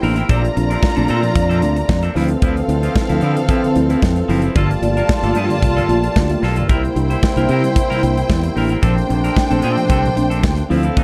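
A straight 4/4 disco groove drives this sultry excerpt, built on an airy, polished drum kit with a punchy kick, a medium-tuned snare and hi-hat, set up front in a small room. A growly, amped fingered electric bass shares that forward spot. A twangy, picked clean electric guitar and a mellow tine electric piano fill in the accompaniment, with the piano tucked into the background. A lush, woody string section, bowed with vibrato and recorded close, carries the second line, while a smooth-topped French horn section holds sustained chords further back. The harmony moves through Bbmaj9, Dm9, Gm9 and C7 before returning to Bbmaj9 at 8.8 seconds, all under light reverb and a dark, warm production.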